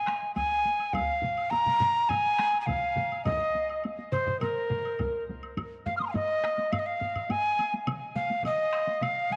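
Ceremonial and driving, this excerpt of Japanese traditional taiko drum ensemble music moves at 104 BPM in a straight 4/4, with a breathy, mellow alto recorder carrying an expressive melody up front, its tongued chiff, vibrato and rolled-off highs colored by tape echo, over several taiko ensemble parts struck with heavy and hard sticks (two close and dry, one set back in a live room, and one with a vintage, band-limited tone, one of them dropping out at 5.4 s and another at 7.4 s) plus a woody woodblock in the background, the whole set in a wet plate reverb.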